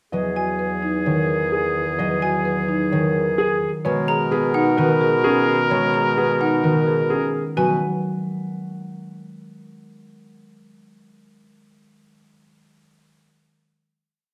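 A brief, propulsive and bright minimalist classical piece in B major at 129 BPM opens at 0.1 s with a dark, smooth grand piano melody, a bright oboe second line with light vibrato and swelling held notes, a ringing, fingerpicked concert harp, round, woody soft-mallet marimba arpeggios and long mellow bassoon bass notes; dry, airy xylophone arpeggios join at 0.4 s, and the piano, harp, marimba and xylophone each cycle a repeated short cell over Eadd9 and Bmaj9 in a moderate recital-hall space, until the up-front harp rings on alone into a final B5 chord ending at 9.4 s.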